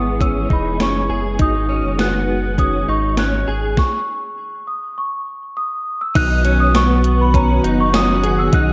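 Dreamy and floating, this 101 BPM dream pop fragment in B major sets a bell-like celesta melody with slapback echo over warbling, chorused organ-string chords, compressed clean electric guitar arpeggios through delay and a round sub bass; an overdriven 80s drum machine with a thumpy kick and gated-reverb snare enters at 0.2 s, a filter sweep runs until 6.2 s with a stop from 3.8 s, and a reversed, granular texture swells faintly in the background from 7.0 s, all within a lush hall reverb that gives a big arena sound.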